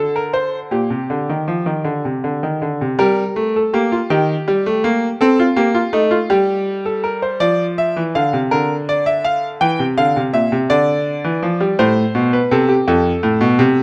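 A solo concert grand piano opens this solemn, serious baroque-style two-part invention in a straight 6/8, its bright, up-front tone reaching from a deep bass up into the upper register. The music settles into a new harmonic center at 7.4 seconds and carries on through a grave chain of minor, major and half-diminished chords. Close, detailed miking captures the piano in a moderate recital-hall reverb, and the passage is cut from a longer piece.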